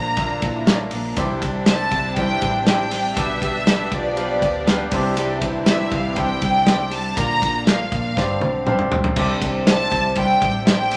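Heard through a club-sized reverb, this excerpt of anthemic, hopeful piano-driven pop moves at 120 BPM in a straight 4/4 in C major. A clear, smooth violin section carries the melody up front, while a bright grand piano with audible action noise and long sustain supplies the accompaniment. Behind them, a mellow French horn section adds a second line, a rich chamber string section holds sustained chords until about 9.1 seconds, and a full-bodied picked steel-string acoustic guitar plays a riff in the background. A foam-muted, round electric bass with a vintage, amped tone anchors the low end. A natural country drum kit with dark cymbals and a punchy kick sits up front from 0.2 seconds and plays a fill from 8.2 to 9.2 seconds, leading back into the Cadd9 that opens the repeat of the section, after a progression through Bb, Cadd9, G/B and Gsus4.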